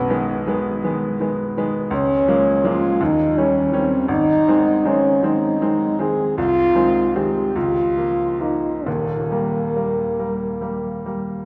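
Tender and serene, this brief romantic classical duo in Ab major drifts in a slow, rubato 6/8 around 44-56 BPM, as a mellow French horn with light vibrato and a soft attack sings the melody until 11.1 seconds over a bright, brilliant grand piano accompaniment, both bathed in a church's lingering three-second reverb.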